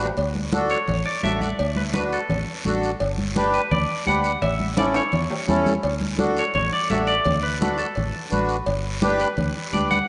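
A bright, twangy clean electric guitar takes the lead from 0.7 seconds, its picked solo sitting up front with a slapback echo in this festive, sunny cumbia at 169 BPM in D major. Beneath it, a reedy, airy accordion carries the accompaniment and a round fingered electric bass holds the low end. Ringing timbales and cowbell, thin-skinned congas played with soft hands and a raspy guiro fill out the percussion, with drum fills at 0.0 and 4.8 seconds, as the chords move through D, G and A under a lush hall reverb in a rough home-demo mix cut from a longer piece.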